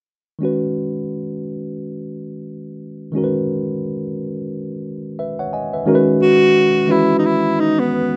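R&B at 88 BPM in C# minor with a gentle sixteenth-note swing, this smooth, soulful fragment of a longer piece opens at 0.4 seconds on a worn, slightly out-of-tune tine electric piano laying down up-front accompaniment from a C#sus2 chord, joined at 6.2 seconds by a breathy, whispered tenor saxophone melody with light vibrato and a soft attack, close-miked and intimate, both parts touched by plate reverb in a rough home demo mix with light reverb.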